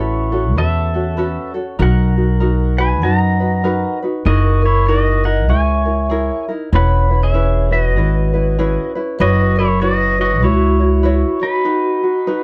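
This Hawaiian excerpt drifts along at 97 BPM in B major with a relaxed, sunny swing. An electric pedal steel guitar carries the melody, played clean and compressed with fingerpicks and slide, its volume swells giving the tune a gentle, singing quality. A light, fingerpicked tenor ukulele picks out the accompaniment through lush changes such as Bmaj7, F#13 and C#m7/E, while a pizzicato upright bass with steel strings sits up front, woody, dark and thumpy. At 3.0 seconds a vibraphone played with soft mallets joins as a second line, metallic and ringing with a fast motor vibrato and a mellow glow. The bass drops out at 11.2 seconds just before a brief break at 11.7 seconds, all captured in a dry, close, 1970s-style studio sound.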